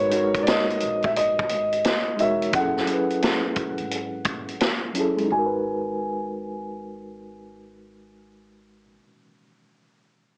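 A smooth, long-sustaining upright piano carries the melody in this hazy, nostalgic lo-fi hip hop excerpt in G# minor at 87 BPM with a swung 16th-note feel, set over a reedy, up-front electric piano with fast tremolo, a thumpy pizzicato upright bass in the background, and a punchy, rolled-off vintage kit that stops at 5.3 seconds, while the chords move from G#m9 to F#m9 under a filter sweep and the mix sits in light reverb with a cassette-tape, small-speaker character.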